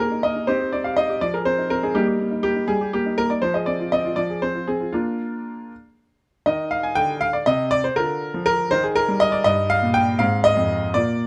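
A dark, warm production with light reverb frames this brief excerpt, cut from a longer classical-period piano sonatina. A clear baby grand piano plays solo and up front, its natural tone and short sustain giving each note a crisp outline across a range from F2 to Ab5. The music moves at 80 BPM in a straight 6/8, counted in dotted quarters, and sits in Eb major with an elegant, playful mood. The harmony opens on Cm and passes through Fm7 and Eb/G before settling toward Bb, and a second section beginning at 6.5 seconds starts on Cmadd9. From there it travels through Bb/D, Eb and Eb/G, ending on Fm/Ab as the excerpt closes at 11.3 seconds.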